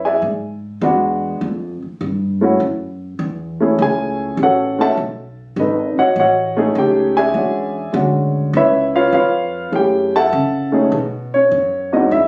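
Captured on a phone in the room and finished with light reverb and compression, this brief cut from a longer jazz piano trio piece opens straight into the playing. At a swinging 101 BPM in 4/4, a dark, mellow baby grand sits up front and solos from 0.0 to 12.1 seconds, with short-sustained phrases over changes like F#m7, B13, E13 and C#7#9. An upright bass plucks a woody, growly line underneath, and the mood stays sophisticated throughout.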